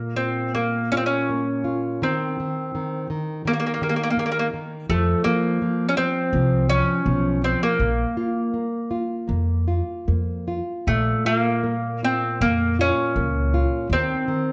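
Mournful and passionate, this brief excerpt of a rubato fado-style ballad in Bb harmonic minor drifts around 74-85 BPM, with an up-front mandolin picking a round, double-strung melody over full-bodied fingerpicked nylon-string guitar, joined at 4.9 s by a woody, growly pizzicato upright bass, all set in a dark production with moderate recital hall reverb.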